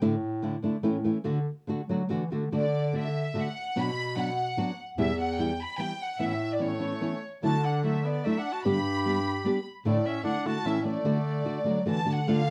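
A rich violin section carries the melody from 2.5 seconds, bowed close and up front with light vibrato, a soft sul tasto attack and a slapback echo. This romantic, festive mariachi folk cut moves in a rubato three-beat feel over a fingerpicked nylon-string guitar and a warm, vintage bass clarinet holding the low line from the start. A clear trumpet adds a classical-style second line from 6.6 to 11.8 seconds, all set in a dark production with moderate studio reverb.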